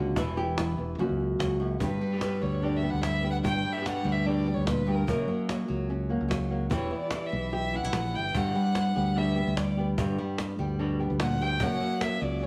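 A passionate, fiery flamenco passage at 147 BPM opens with an up-front, thumb-plucked flamenco guitar carrying the melody over a second, darker fingerpicked guitar adding stabs, both with audible finger squeak, alongside a warm fingered electric bass, while a snappy cajon with snares enters at 0.2 seconds, before a dark, airy-bowed violin takes a solo from 1.8 seconds with light vibrato and a soft attack, all set in a moderate stone room and moving through Em, F# and G.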